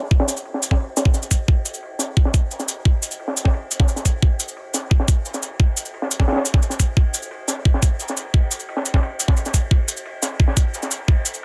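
A knocking, up-front electronic kick drives this tense, aggressive drum and bass excerpt at 175 BPM, layered with a crunchy, saturated breakbeat kit of dark cymbals, hi-hat, ride and a high-tuned snare, gritty and rolled-off on top with its cymbals, hats, snare and room filtered at both ends, while a produced cabasa re-recorded in a small room also sits prominently in a dry mix.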